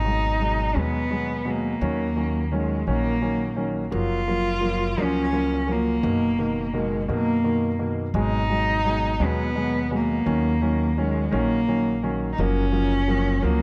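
This fragment of a heartfelt, romantic pop ballad in six-eight sits in a light studio reverb. A single bowed cello carries the melody up front, singing with vibrato and gliding portamento, its warm tone trailed by tape echo, while a clear grand piano supplies accompaniment through lush seventh chords. Beneath them, a pizzicato upright bass adds a woody, growly, thumpy low end throughout the 13.6 seconds.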